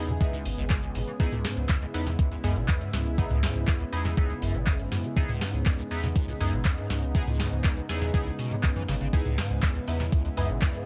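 This dry cut from a longer acid house track sits in C# minor at 121 BPM, holding on a single C#m7 chord with a gritty, hypnotic pull. An overdriven, thumpy electronic kick sits up front, its sampler-style hit caught in a small room, while a booming analog drum machine adds a crisp snare, metallic hi-hats, handclaps, cabasa, toms and crash cymbal with a tape-warm tint. The liquid acid bass carries the riff with a squelchy, resonant square-wave tone, shaped by a filter sweep, phaser, ensemble chorus and digital delay. Beneath it, a deep triangle sub bass holds the low end with tube saturation, and both bass parts share sidechain pumping with the pad. A lush, detuned sawtooth unison pad sustains the chords with slow attack, long release and chorus, while a nasal, band-passed chord stab cuts through with bright, decaying hits treated by phaser, analog chorus and delay until about 10.5 seconds.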